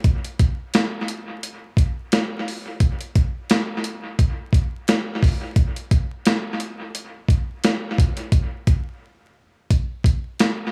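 A dusty soul sampler-style drum kit opens the recording, its thumpy kick, medium-tuned snare and hi-hat sitting up front in a tough, moody hip hop groove at 87 BPM in 4/4 with a light swing on the sixteenths. The kit sounds compressed and gritty, and a dub echo trails off its hits. The whole mix leans heavily on echo, with a moderate spring reverb, a small room ambience and a layer of vinyl crackle giving it a worn, dusty character. A brief break arrives at 9.0 seconds, and a new section begins at 9.7 seconds before the drums stop at 10.6 seconds, as this short cut from a longer piece ends.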